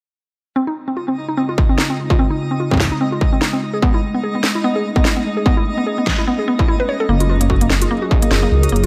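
Playful and intricate, this short IDM passage moves at 147 BPM in 4/4 with a swung sixteenth-note feel, set in Db major and cut from a longer piece. A woody, mallet-like synth pluck opens at 0.6 seconds with up-front arpeggios, treated with chorus, digital delay and shimmer reverb while a filter sweep runs across it, and a warbling, nostalgic tape-like pad soon follows with lo-fi sustained chords under its own filter sweep. A twinkling granular texture adds an octave-up shimmer high above, while a distorted electronic kick and an industrial kit with clanging snare and crisp hats, the hats and snare carrying digital delay, drive the groove up front. The harmony moves from Dbmaj9 to Amaj9 and then to Gbmaj9, where a deep, rumbling detuned saw bass enters at 7.1 seconds with a dark, saturated, beating tone. The mix sits in a light reverb, with the drums and bass forward against the hazy pad and glittering texture.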